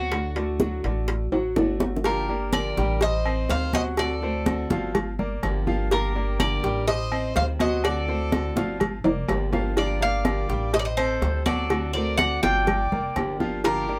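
A straight 4/4 pulse at 124 BPM drives this sultry, nostalgic Cuban son and guajira passage in G minor, where high-tuned, damped congas with soft hands, tight bongos and cowbell, and ringing metal-shell timbales with agogo bells, with drum fills at 1.3 and 9.0 seconds, back a metallic, double-strung Cuban tres melody up front, a woody pizzicato upright bass, a small fingerpicked nylon-string guitar and short-sustain bright grand piano arpeggios, while a distant, punchy trumpet with light vibrato enters at 2.1 seconds on a second line over a Gm7, Am7b5, D7 cycle, all set in a short, wet booth ambience heard from further back in the room.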